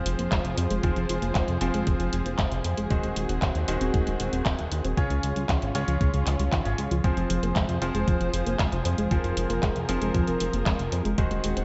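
Lush, woody studio strings hold dark sustained chords from the first moment, joined by bright grand piano stabs, softened by a low-pass filter and tape echo with a hint of action noise, and a glossy, chorused synth bass that sits up front in this melodramatic, nostalgic italo disco excerpt. A mellow, round pluck arpeggio with chorus and tape echo drifts in the background under a filter sweep. A thumpy, sampler-style electronic kick arrives at 0.3 s alongside a house kit of handclaps and bright hi-hats in gated reverb, while light digital ambience frames a minor-key progression that circles back to Fm at 7.0 s.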